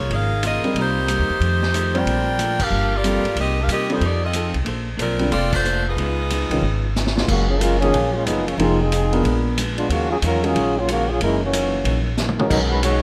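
Energetic and joyful, this big band swing excerpt moves at 184 BPM in 4/4 with a swung eighth-note feel, as a bright, tight saxophone section carries the melody over woody pizzicato upright bass, a vintage drum kit with dark cymbals and a punchy kick, a grand piano with short sustain, and a clean, compressed hollow-body electric guitar tucked in the background, with band accents at 2.5 and 5.5 seconds. After a drum fill, the saxophones drop out and a clear trombone section with light vibrato takes a solo from 7.3 seconds as the harmony settles into F# major, all set in light reverb.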